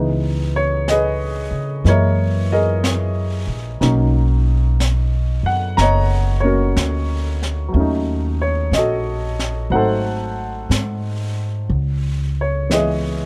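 A slow 4/4 pulse with swung eighths sets a smoky, wistful jazz ballad mood in this short passage cut from a longer piece. The upright bass is plucked and up front, with a woody, thumpy tone that anchors the low end from the first moment. A warm baby grand piano, also close and natural-sounding, carries the accompaniment through a progression moving from C#m7 through F#13 and Bmaj9 to D#m7b5 and G#7b9 before settling on C#m9. At 0.9 seconds a brushed drum kit joins softly underneath, its high-tuned snare and hi-hat sitting in an acoustic studio room behind the bass and piano. The recording is dry and intimate, with close, detailed microphones that bring out every nuance of the instruments.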